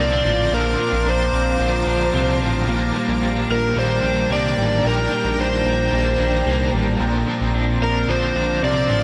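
A dreamy, floating dream pop excerpt opens with everything at once: an up-front overdriven slide guitar played with fingerpicks carries the melody through digital delay, over a fat, saturated analog bass with a detuned sawtooth bite and fast pluck. Beneath them, a slightly broken-up, compressed electric guitar picks arpeggios through analog chorus and delay, while a bright, double-tracked crunchy guitar sits in the background with tremolo and lush chorus. A shimmering, ethereal pad with octave-up shimmer and granular texture sustains chords through chorus and phaser, moving from Bbadd9 to Ebmaj7 at 2.7 seconds and back at 7.0 seconds, all bathed in a huge ambient reverb.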